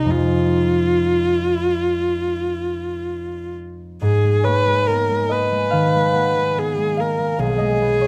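A single bowed viola carries the melody close and up front, its warm tone shaded with vibrato and expressive portamento as it moves between Eb4 and B4. This is an impressionist classical duo in 4/4, unfolding with a rubato feel at roughly 59-74 BPM, and the mood is wistful and mysterious. Beneath it, a concert harp sits equally forward, its mellow, thumb-plucked acoustic notes ringing across a range from B1 to F#5. The harmony opens on Fm7 in F minor, then shifts at 4.0 seconds to G#m9 as the music turns to G# dorian, settling on B6 at 7.4 seconds. A moderate, large studio reverb gives the pair a spacious glow, and the 8.1-second passage is cut from a longer piece.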